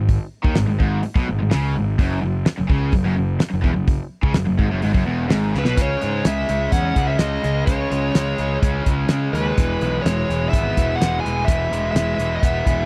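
A dry, close recording with the tight, unadorned sound of a 1970s studio carries this swaggering, brooding classic rock excerpt at 126 BPM in a straight 4/4. A damped 70s drum kit sits up front with a fat snare, tight kick and hi-hat, while a round, punchy fuzz bass, picked and overdriven, sits up front as well and digs into the low end. Two picked electric guitars play the riff together from the start, one distorted and compressed further back, the other overdriven, both bright over chords moving from G#m to F#5. A drum fill at 5.5 seconds leads into a new section, where a dark, smooth lead guitar enters at 5.6 seconds with an overdriven melody touched by slapback echo. Underneath, the harmony shifts to C#5 and then E as the piece cuts off at 12.9 seconds.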